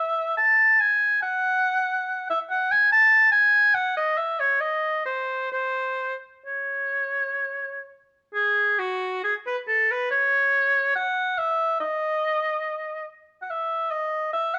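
A lone oboe opens this flowing, dance-like baroque-style fantasia in C# minor, singing with vibrato in a rubato 3/4 at roughly 62-73 BPM across a range from F#4 to A5. The dark production places the instrument in a stone room whose moderate reverb gives it a roomy, slightly distant glow. At 8.4 s the line moves into a new section, and the fragment, cut from a longer piece, ends at 14.6 s.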